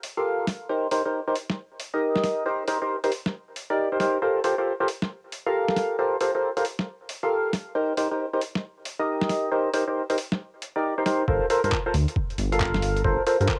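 A skippy two-step garage groove at 136 BPM swings its 16ths, with a gritty, pitched-down sampler drum kit of handclaps, hi-hat and a medium-tuned snare, overdriven and taped to cassette, driving a soulful G minor passage that moves through Cm7 and Gm11. Up front, a hollow, nasal organ stab with a lush chorus and tape echo carries the harmony from 0.2 seconds, heard in a small booth-like room on a home cassette recording. At the drop at 11.3 seconds, a thumpy overdriven electronic kick and a deep, rumbling detuned saw bass enter together for the closing bars of this cut from a longer piece.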